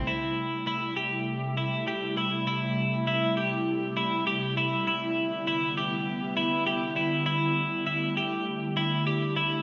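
A hazy, melancholic dream pop passage opens with a bright, twangy twelve-string electric guitar picking clean, compressed arpeggios up front, touched by subtle chorus and delay, over an ethereal pad whose detuned, slow-attack sustained chords carry ensemble chorus and their own reverb. The harmony drifts from Am7 to Em7 at 4.9 seconds, both parts holding throughout this short section cut from a longer piece. A lush hall reverb and bright 1980s-style digital production wrap the sound in a shimmering haze.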